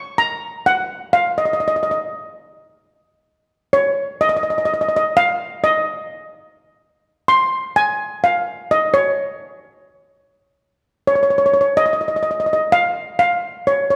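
Carefree, bouncy calypso with a lightly swung lilt, played by a lone lead steel pan struck with hard rubber sticks, its dark, shimmering metallic voice sitting up front in a lush recital-hall reverb, moving into a new section at 11.1 seconds before this fragment of a longer piece cuts off at 14.0 seconds.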